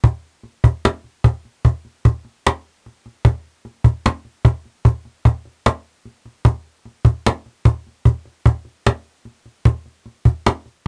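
The recording is dry and close, with little reverb, in the manner of a 1970s studio session. This brief indie pop fragment, cut from a longer piece, carries a hazy, dreamy mood at a relaxed 75 BPM in a straight 4/4. A lone acoustic cajon plays throughout, from 0.0 to 10.8 seconds, and is the only part heard. Its tone is woody, with a faint snare rattle. Placed up front in the mix, the cajon sounds intimate and immediate, giving the short passage an unadorned, close-miked character.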